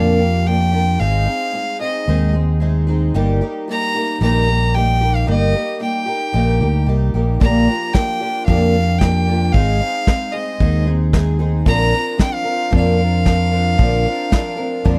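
A bright, nasal fiddle carries the melody up front, its earthy bowed tone coming from a single player through this short passage from a longer acoustic folk piece. Beneath it, a picked twelve-string acoustic guitar supplies a shimmering, octave-doubled accompaniment, while a round, amped electric bass played with the fingers anchors the low end. The harmony moves through Bb6, Ab and Eb/G before settling on a Bbadd9 at 11.7 seconds. At 7.4 seconds a soft brush drum kit joins, pairing a tight kick with a medium-tuned snare. The mood is gentle and warm, heard through the small room ambience of a dry, close recording in a 1970s studio style.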